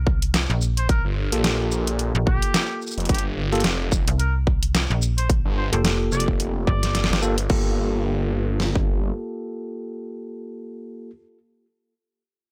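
A dry, gritty hardware recording with digital ambience carries this playful, funky glitch hop, cut from a longer piece, at 109 BPM in G minor with a swung 16th feel over a Gm9 drop. Layered, overdriven dubstep drums with a punchy kick and deep snare sit up front, joined by a snappy FM slap bass with a metallic attack and, from 1.0 s, a swirling, thick detuned saw bass run through phaser and tube saturation. A clear trumpet with light vibrato and tape echo carries the melody from 0.8 s, while a bell-like tine electric piano adds stabs with vintage 12-bit sampler texture, sidechain pumping and tape echo until 11.1 s.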